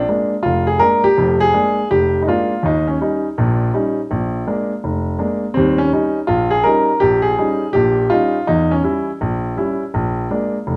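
Warm and sophisticated, this short solo jazz passage swings easily in 4/4, cut from a longer piece. A baby grand piano, natural and up front, plays alone from 0.0 to 10.8 seconds, ranging from deep F1 up to Bb4 as it moves through a bluesy cycle of Bb7 and Eb7 and passes through Edim7 before settling back on Bb7. The performance was captured live in one room, and a moderate large-studio reverb lends the piano an open, polished sheen.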